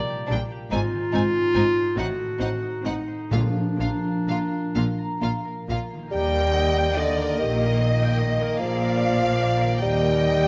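Lyrical and tender, this slow, romantic orchestral passage moves in 6/8 with rubato, as a mellow, distant clarinet carries a second line over ringing, fingerpicked harp arpeggios until 5.7 seconds. Smooth, even violins sing the melody, while a richer violin section with soft attacks shapes a second line, background violas accompany, and lush, focused cellos and double basses hold the bass, with round, soft-mallet timpani touching in from 3.3 seconds. At 6.1 seconds an up-front bassoon with light vibrato enters as accompaniment, and the orchestra sits in a moderate scoring-stage reverb.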